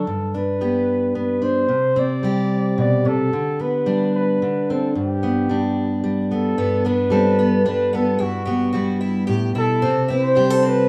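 Acoustic folk in an unhurried 3/4, nostalgic and peaceful, where a mellow, close-miked flugelhorn with light vibrato sings the melody up front over a fingerpicked plugged-in steel-string guitar, joined at 6.6 s by a bright, boxy twelve-string guitar whose shimmering octave-doubled arpeggios carry a hint of finger squeak, all set in the wet small-room ambience of a rough home demo.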